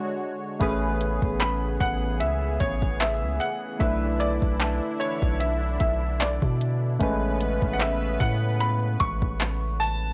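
Contemporary R&B at a relaxed 75 BPM in A major, tender and smooth, this short excerpt opens on soft, detuned electric-piano-like synth keys and a lush, nasal unison pad, both treated with chorus, before a deep, sine-toned 808-style bass and a smooth, up-front drum kit of soft kick, hi-hat and handclaps arrive at 0.6 seconds alongside a very quiet, bell-like celesta. A clear baby grand piano carries the melody from 1.4 seconds over gently swung sixteenths and chords moving from Amaj9 to Bm7 and back. The sound is dry and gritty, with the character of cassette tape and little reverb.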